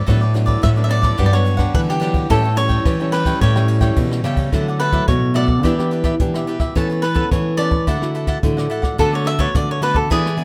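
This rough home demo carries a studio reverb, in a sunny, playful samba-choro passage in D major at 108 BPM, cut from a longer piece. Two nylon-string guitars, fingerpicked in a warm classical style, carry the bass line and the accompaniment, while a bright, crisp, up-front cavaquinho picks chords such as Gmaj7 and A7 beneath a warm, crisp, picked cavaquinho melody that enters at 0.6 seconds. The brushed jazz kit, natural in its studio room, adds dark cymbals, a boomy kick, hi-hat and rim clicks, and from 4.5 seconds the lead cavaquinho takes a solo over a section that moves through Dadd9, Em7 and Bm7/D.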